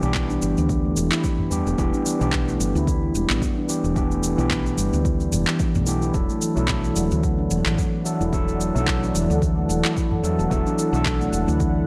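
This organic downtempo excerpt has a warm, hypnotic mood, with a lightly swung sixteenth-note feel that sits over a steady pulse in four. A ringing, meditative handpan plays arpeggios throughout, while an overdriven tine electric piano, barky and run through a combo amp, fills out the accompaniment with tape echo and a sidechain pumping effect. Underneath, a round, dark fretless electric bass holds the low end with the same pumping, and a punchy, layered electronic kick drives the groove alongside tape-warm electronic cabasa and handclaps. A small, very quiet udu joins at 1.4 seconds and drops away at 10.2 seconds, and a smooth, detuned sawtooth pad with chorus enters at 6.1 seconds with soft sustained chords as the harmony moves from Em7 to D/E. The sound is dry and gritty, with only light reverb and a digital ambience around it.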